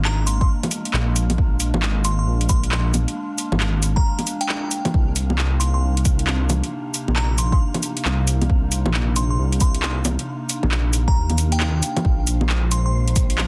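Dense, heavily limited and set in a digital ambience, this rainy, nocturnal future garage excerpt in C minor moves at 135 BPM with a swung 16th feel, cut from a longer piece. A deep, overdriven electronic kick and an overdriven deep house kit of bongos, cabasa, handclaps and metallic hi-hat sit up front beside a dark, rumbling detuned saw bass that pumps to the sidechain, while a warbling, nostalgic tape-like pad and an airy, breathy wind texture hover in the background over Bb7 and Cm9 chords. A glassy, crystalline FM bell carries the melody through chorus and dub echo, and the kick drops out from 11.2 to 12.1 seconds.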